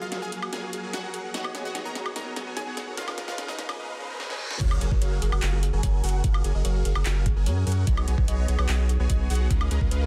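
A half-time 4/4 pulse at 147 BPM drives this lush, euphoric future bass passage in F# major, cut from a longer piece and built over chords moving from F#maj9 through B6 to C#13. A build-up runs through the first 4.6 seconds, with a bright, detuned unison pluck carrying the melody through a phaser and tape echo, a mellow, ethereal pad holding sustained chords in the background under an ensemble chorus and a filter sweep, and a round, tine-like thumb-piano-style FM pluck spinning dark arpeggios with chorus and dub echo. Huge supersaw chords with a phaser and vintage 12-bit sampler grit push the riff throughout, while a layered pop drum kit with a fat snare, metallic hats, handclaps, woodblock and crash plays fills, its overdriven sound re-recorded in a small room. A very quiet riser, reverse cymbal and sub drop lead into the drop at 4.6 seconds, where a deep, saturated sine sub bass sits up front and a knocking, tape-warm electronic kick joins. 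Most of the synth parts pump against the sidechain, and the dense, heavily limited master keeps the sound dry and close.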